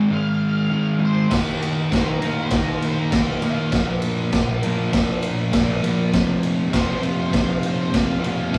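An up-front, double-tracked fuzz guitar drives a riff through Ab5, Eb5, Bb5 and F5 chords in this raw, swaggering garage rock excerpt, joined at 0.1 seconds by a quieter, dark octave-fuzz lead guitar carrying the melody and at 1.3 seconds by a gritty, saturated drum kit with punchy kick, medium-tuned snare, crash and ride in a bright, pumping stone room, the whole take wrapped in a rough rehearsal-room sound with a short booth ambience.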